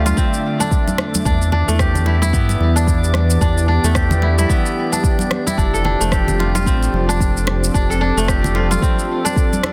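A light digital ambience and a dense, heavily limited master frame this mystical, hypnotic organic downtempo excerpt at 111 BPM with a swung 16th feel, where a bright, ringing kora's fingerpicked arpeggios with digital delay float over a smooth, detuned analog pad carrying chorus, 12-bit sampler grit and sidechain pumping through Dm9, Em7 and F69, while a round, dark ring-modulated bass pumps beneath until 8.8 s, a deep electronic kick, an electronic shaker and rim click with soft clipping on the snare, and hard-hand congas in the background keep time, and a calm, glassy texture of drifting overtones shimmers far behind.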